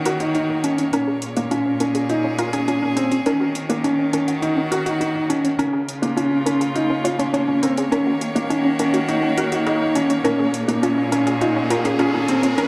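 Moving and cinematic, this excerpt of piano and strings electronica at 103 BPM in Eb minor builds throughout, with a felt-muted upright piano riff sitting up front, mellow and intimate, over sustained chords from a clear, nasal string quartet with vibrato. A lush, detuned sawtooth pluck plays arpeggios in the background under a filter sweep, while a round sine sub bass is barely audible and a deep house kit adds metallic, overdriven hi-hats and rim clicks. A very quiet electronic riser enters at 10.2 seconds, and the whole mix sits in a dark production with concert hall reverb around Ebm7, Bbm7 and Db6 chords.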